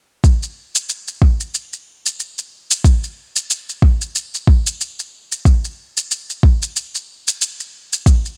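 A gently swung 92 BPM downtempo groove in 4/4 carries a mystical, hypnotic mood as a soft, overdriven electronic kick drum and an up-front, gritty shaker, each set in a small room reverb, play together from 0.2 seconds in a short cut with bright 1980s-style digital production.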